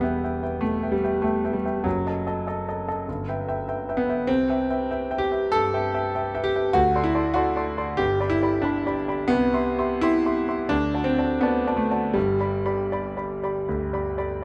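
The rubato pulse in 4/4 drifts between 77 and 101 BPM, giving this romantic character piece for solo piano a lyrical flow. A concert grand carries everything alone for the full 14.4 seconds, ranging from a deep E1 in the bass up to C6, with an intimate, natural tone and the sound of the action audible through the close, detailed microphones. Set in G major and tuned to A4 = 439 Hz, the passage opens on E minor and moves through D#dim/F#, Em/G and Cmaj7 before D7 leads to G, then Cmaj7 and D resolve home to G. The instrument sits up front within a moderate scoring-stage reverb of about 2.0 seconds, which lends a gentle bloom around the close-up sound. Cut from a longer piece, this warm, lyrical phrase feels like a fragment of a larger romantic reverie.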